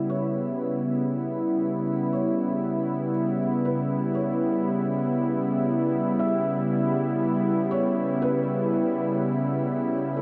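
Luminous and weightless, this ambient passage drifts at 59 BPM in 4/4 with a straight feel, resting in A mixolydian on a single rootless A9 chord throughout its 10.2 seconds. A smooth, detuned sawtooth pad sits up front, holding sustained chords with a soft attack and long release, thickened by chorus and lifted by shimmer reverb. Behind it, a felt-muted upright piano carries the melody between A4 and E5, its tone mellow, intimate and vintage, with thick felt dulling each note, and shimmer reverb and delay trailing after it. The pad leads the balance while the piano stays tucked in the background. The production is dark and warm, set in a huge ambient reverb with an 8.0-second decay that lets every sound hang in the air of this short cut from a longer piece.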